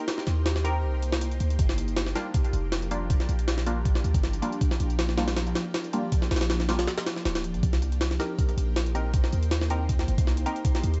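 A straight 4/4 jungle groove at 159 BPM drives this dark, raw drum and bass excerpt, built on a compressed, pitched-up sampler-style kit with a thumpy kick, high-tuned snare and hi-hat, sitting gritty and up front in studio reverb from 0.1 s. A deep, boomy 808-style bass joins at 0.3 s, a sine tone with a noise layer, fast attack and decaying notes, holding equal prominence with the drums. Above them an ethereal, airy pad of detuned triangle and sawtooth voices sustains chords through ensemble chorus, built-in reverb and phaser, its slow attack and long release giving it a bright, floating quality. A muted, filtered dub chord stab of sawtooth and square waves adds short plucked hits with phaser and dub echo. The harmony moves from Cm7 to Gm7, and after a brief break from 6.9 s the drop returns on Cm7 at 7.6 s, all wrapped in a dark, warm production with vinyl crackle and light reverb.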